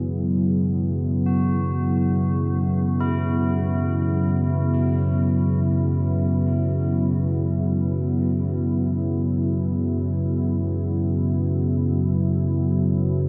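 A deep, ominous rumbling drone with its own reverb and a moody, detuned analog pad with chorus sit up front from the very start of this desolate dark ambient excerpt, sustaining an F#sus2 chord, while solemn, metallic tubular bells fade in with tape-echoed arpeggios from 1.3 s, the whole scene suspended in a huge, wet reverb.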